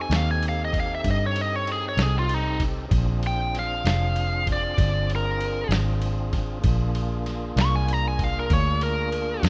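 A biting, bright overdriven lead guitar takes an up-front solo over a gritty, soulful slow blues in 12/8 at 64 BPM, backed by a fat tonewheel organ holding chords through overdrive and a fast rotary speaker, a dark, round, foam-muted fingered bass, and a muffled, pitched-down sampler-style kit with a thumpy kick and ride, all in a dry, rough home-demo mix moving from F9 to Bb9 at 2.9 seconds.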